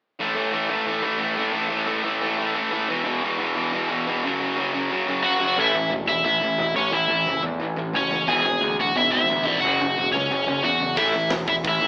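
Punk rock at 178 BPM in A major, rebellious and energetic, with two picked rhythm guitars, one bright and distorted up front, the other dark and sludgy with overdrive, opening on a low riff over A5, E5 and F#5 power chords. At 5.2 seconds a cranked stack guitar joins with a high, overdriven lead melody, followed by a growling, direct-amped picked bass as the harmony shifts to A and E/G#. A tight, polished and airy metal drum kit with a medium-tuned snare and tight kick appears only briefly at 11.0 seconds, and the whole band sounds live in a stone room with an AM radio sound, in a fragment cut from a longer piece.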